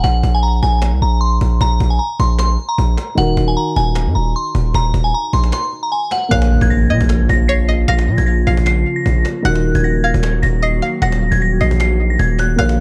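This dark, dry trap excerpt has a warm, close production, with a hard-hitting mood and a half-time feel. A distorted, saturated 808-style bass sits up front from the start, its heavy sine tone carrying a noise layer, while a woody cajon with faint snares and hard hands keeps the beat in a vintage, band-limited register. Above them a crystalline FM synth bell carries the melody, warbling through chorus and tremolo and softened by a low-pass filter. A dark, boxy concert grand piano enters at 3.2 seconds with mellow accompaniment over minor chords. At 6.3 seconds a very quiet electronic impact marks a new section, where a twangy, string-like resonator pluck adds a second line colored by chorus, phaser and tape echo. An ethereal, slow-attack FM pad follows at 7.2 seconds, holding sustained chords in its own ensemble chorus and built-in reverb.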